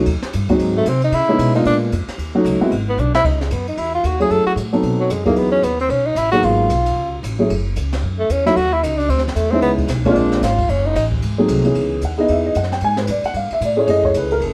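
Small-group swing and bop jazz in C# minor at a brisk, cool 226 BPM, where a slightly detuned, dark and mellow vintage upright piano comps alongside woody pizzicato upright bass and a small-room brush kit with a high-tuned snare and boomy kick (plus a drum fill at 3.0 seconds), while a breathy tenor saxophone with vibrato and scooped notes solos up front from 0.8 to 11.1 seconds, all under light reverb in this excerpt from a longer piece.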